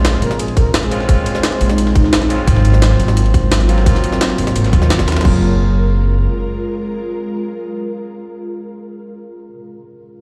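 Liquid drum and bass with an uplifting, warm mood, heard in a short cut from a longer piece that opens at the height of its drop. A pitched-up, tape-warm jungle sampler-style kit with crash, hi-hat and snare plays from the start, and a tight, layered electronic kick drum joins up front at 0.6 s, while a gritty breakbeat sampler-style kit with ride and a high-tuned snare stays in the background behind high-pass filtering. A woody, thumpy pizzicato upright bass with tube saturation carries the low end until 6.3 s. Above it, a barky, overdriven tine electric piano runs through a combo amp with digital delay, and a mellow, ethereal pad holds detuned sustained chords with ensemble chorus, moving from Bbm9 through Ab13 to Gbmaj9. A breathy, flute-like synth lead with vibrato, 12-bit sampler grit and delay drifts softly in the background for a brief phrase, and the whole mix sounds as if played on a big sound system in a bare room with large studio reverb.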